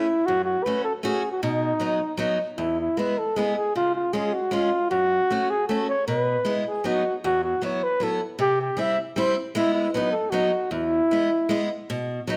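A mellow flugelhorn carries the melody up front in a classical-style solo voice, present and mellow from the first moment until about 11.7 seconds. Beside it, a picked steel-string acoustic guitar supplies the accompaniment, bright with fresh strings, an audible finger squeak and a concert character, ringing on until 12.4 seconds. This bouncy, festive alpine folk dance tune sways in triple metre with a rubato feel, its chords moving from F#m through B, E and C# before settling back on E. Close, detailed microphones capture both players, while a moderate recital hall reverb surrounds the pair. The passage is cut from a longer piece.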